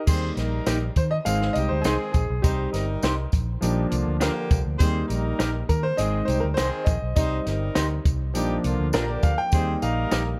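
A dark, warm studio sound with light reverb frames this joyful, danceable slice of uptempo 1960s-style soul at 102 BPM in Eb major, cycling through Eb, Ab, Cm and Bb. A clear, boxy concert grand piano takes the solo up front, its action noise audible, over a round, foam-muted electric bass, a compact cocktail kit with a punchy kick and high-tuned snare, and a jingly, saturated tambourine. A smooth-topped, jazz-style horn section plays a tight second line, while from 0.7 s an electric guitar through a small old amp adds slightly broken-up, lo-fi stabs.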